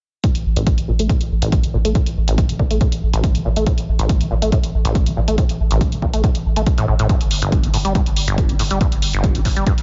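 Driving and industrial, this peak-time techno excerpt moves at 140 BPM in straight 4/4, built on a punchy analog kick and a quieter analog hi-hat that both sound re-recorded in a large room, a deep, thick saturated sine sub bass pumping beneath overdrive and a low-pass filter, and an up-front, squelchy sawtooth acid bass riff carrying a resonant filter sweep through subtle chorus, dub echo and sidechain pumping, in a dry mix with a dark top end.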